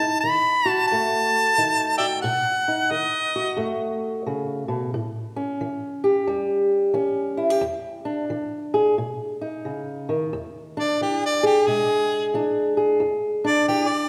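Laid-back and soulful, this acoustic country blues moves at an unhurried 89 BPM in 4/4 with a swing feel on the eighth notes, and it is cut from a longer piece. A fingerpicked, ladder-braced acoustic guitar carries the accompaniment throughout, its old strings giving a dark, woody, boxy sound that sits up front. A clear harmonica takes the melody, playing from the start until 3.6 seconds and returning at 10.8 seconds for a solo. Its playing is jazz-styled, with vibrato, tongue slaps and scooped notes. The harmony moves through B7, A7, E7 and B before settling back on E7 as the solo section begins. Both instruments are placed close, with a moderate reverb suggesting a church or concert hall around them.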